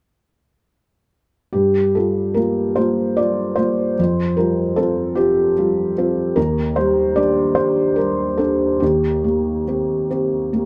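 Melancholic and intimate, this short neoclassical minimalist piano piece unfolds in a rubato 6/8, carried by a lone felt-muted upright piano that enters at 1.5 seconds and plays until 10.7 seconds. The piano sounds mellow and close, placed up front with thick felt softening each note and audible action noise adding a private, in-the-room quality under light reverb. It moves through Gm7, Fsus2, Ebmaj7 and Cm7/Eb across a range from Eb2 to D5, as if lifted from a longer work.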